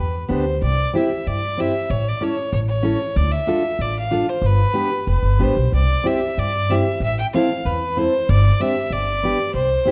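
In a rubato 2/4 at 94 BPM, this bouncy, jolly fragment of alpine folk dance music is cut from a longer piece and sits in C major. A single bowed fiddle, clear and slightly nasal with a light vibrato and an earthy, smooth top, carries the melody up front from the opening moment. Beneath it, a pizzicato upright bass with steel strings gives a woody, growly, thumpy low end, also placed up front. A fingerpicked jumbo steel-string acoustic guitar joins at 0.3 seconds with full-bodied accompaniment, and finger squeaks come through. The harmony moves from G to C, then through A, D minor, G, C and A minor, before a Gsus4 settles onto G near the close. A moderate recital-hall reverb and a dark, warm production give the small dance band a cosy sense of space.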